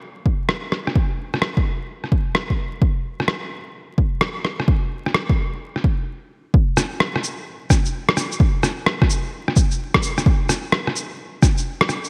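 A punchy, overdriven electronic kick drum sits up front from 0.3 seconds alongside a muffled, pitched-down rim click and shaker with a compressed, sampler-style, tape-warm sound, their swung sixteenth-note feel giving this ghostly, wistful future garage excerpt its sway, broken by a brief stop at 6.1 seconds before the second section, all under bright 1980s-style digital production with light reverb and a bed of vinyl crackle.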